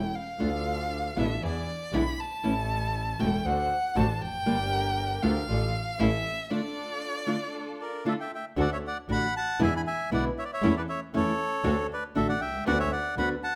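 Passionate and playful, this rubato tango at 118 BPM in 4/4 is cut from a longer piece and opens in D minor with a solo from a single close, expressive violin, bowed with vibrato, soft attacks and portamento. Beneath it, an earthy bowed double bass with light vibrato, a small fingerpicked nylon-string guitar and a veiled, con sordino string section adding dark stabs in the background support the line. During a break, a reedy, dry bandoneon takes the melody from 7.8 seconds, and the music turns to D major at 8.6 seconds, all within a moderate, large studio reverb.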